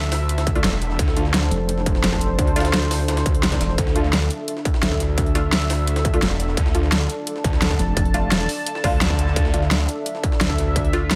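Aggressive and mechanical, this dark technical drum and bass excerpt drives at 172 BPM in a straight 4/4, resting on D minor throughout. A metallic, wobbling FM bass sits up front for the whole passage, joined by a snarling distorted saw bass that growls in briefly at 0.6 seconds, then returns from 3.8 to 9.9 seconds with a moving notch and sidechain pumping. The drums stack three layers: an up-front dubstep kit with a huge snare and bright hats, a distorted electronic kick, and a gritty, pitched-up jungle sampler-style kit with a high-tuned snare, overdriven and high-passed, tucked in the background. Above them, a sweeping resonant pad holds evolving chords with a filter swell, slow attack, chorus and sidechain pumping. A muted, deep dub chord stab plucks through phaser and digital delay at the back of the mix. The whole is set in a light reverb, with the kick and up-front kit carrying a tape-like warmth.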